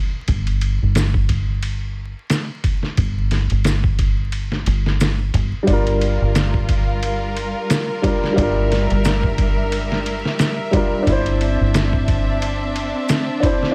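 A lightly swung groove opens the piece at 0.3 seconds, with a muffled, pitched-down sampler-style drum kit sitting up front: a thumpy kick, a medium-tuned snare and ride cymbal, all compressed with a tape-warm tone in a small room. A deep dub fingered electric bass enters alongside it, dark, round and punchy with a foam-muted attack, while saturated maracas ring faintly in the background from 1.0 seconds. At 5.6 seconds a warm, woody upright piano joins with harmonic tremolo and tape echo, and a clear symphonic string section follows almost at once, bowing smooth, even chords with light vibrato over a Gm7 that later gives way to Cadd9/G. A layer of vinyl crackle hangs over the whole room sound, deepening the dark, smoky trip hop mood of this excerpt from a longer piece.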